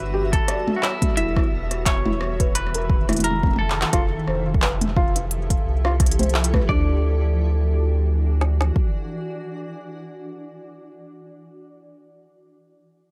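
A playful, intricate IDM fragment opens with a clean, picked semi-hollow electric guitar melody carrying warbly pitch drift and dub echo over a blurred, bright granular cloud pad, a round sine sub bass and a very quiet pulsing gated texture; soft felt-muted upright piano arpeggios with audible action noise and dub echo join at 0.1 s, and an up-front organic electronic drum kit arrives at 0.3 s with an overdriven deep kick and woody snare plus handclaps, crisp hi-hat, rim click and toms, the latter group falling away at 6.7 s as the harmony settles on Dadd9.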